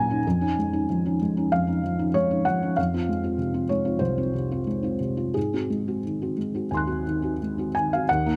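The recording sounds close and detailed, with little reverb, so the felt-muted upright piano sits up front and its action noise comes through clearly. This short excerpt of neoclassical minimalist piano moves in 4/4 at roughly 85-98 BPM with a rubato feel, and the mood is wistful and intimate. The solo piano plays from 0.0 to 8.4 seconds, spanning C2 to Gb6, its thick felt giving a soft, dark, mellow tone. The harmony moves from Dbadd9/F to Fm at 2.8 seconds and then to Ab7 at 5.4 seconds. Cut from a longer piece, the passage feels like a private moment overheard at the keyboard.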